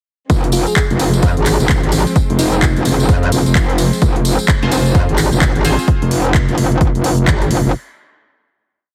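This gritty, aggressive bass house piece in F minor at 129 BPM drops straight in at 0.3 seconds with a punchy four-on-the-floor kick, a swung house kit of handclaps and hi-hats, close, jingly tambourine sixteenths, and an up-front metallic, saturated wobble bass with chorus and sidechain pumping under a dark, sampler-gritty chamber string pad; a sparkling, bell-like FM electric piano with chorus, tremolo and delay adds short phrases in the background from 0.5 seconds, and nasal, band-passed syncopated chord stabs with phaser and delay cut through from 4.6 seconds, all within a dry, heavily compressed, radio-like sound.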